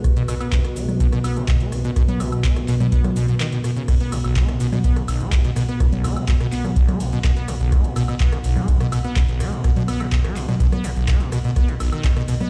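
A squelchy, resonant sawtooth acid bass drives this playful, raw acid house excerpt at 125 BPM, its saturated, fast-attack plucks sitting up front with analog chorus, delay and a gritty 12-bit sampler edge as it runs a riff from B1 to B3. Beneath it, a deep electronic kick with a tape-warm analog thump anchors the straight 4/4 until 12.1 seconds, while a booming analog drum machine fills in dry, metallic hi-hats alongside congas, handclaps, rim clicks, shaker, woodblock, ride and crash, both kit parts touched by small room reverb. A dark, moody analog pad blends square, sawtooth and triangle waves with a sub octave and a moving notch, holding slow-attack chords with long release from B2 to F#5, colored by chorus and sidechain pumping. The whole excerpt stays in one section built on a B5 chord, interrupted by a brief break between 3.4 and 3.9 seconds. The mix has the feel of a big sound system in a bare room, with large studio reverb and some lossy compression artefacts adding to its rough character.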